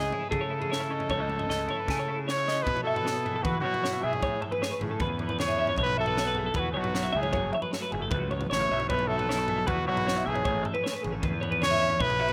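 Bright and playful, this 12.3-second clip of math rock with a midwest emo lean moves at 154 BPM in a straight 4/4, centred on A major. A clear, punchy trumpet carries the melody up front with a light vibrato, sitting close and solo over the band. Two twelve-string electric guitars ring with a twangy, clean, compressed brightness: one picks out accompaniment through a tremolo, while the other, set further back, picks arpeggios colored by a phaser. Underneath, a fingered electric bass adds a dark, round fuzz with overdrive, and a crisp fusion kit with a high-tuned snare and punchy kick joins at 0.1 seconds, playing a drum fill from 1.9 to 2.7 seconds as the music passes into a new section. Chords such as Amaj9, B9sus4 and F#m7 give the harmony an open, jazzy shimmer, all heard through light reverb and small-room ambience in a rough home-demo mix.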